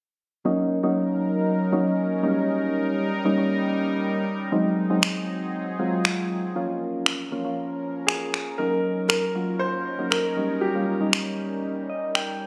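A short, energetic dance-pop excerpt in Eb dorian at 118 BPM opens with soft, round electric-piano-like synth keys and an airy, detuned sawtooth pad carrying chords from Ebm7 through Eb7, Ab7 and Bbm, with up-front electronic finger snaps arriving at 5.0 seconds, a natural baby grand piano adding a brief melody from 8.1 seconds, and a synth-keys fill closing the passage under light reverb and compression.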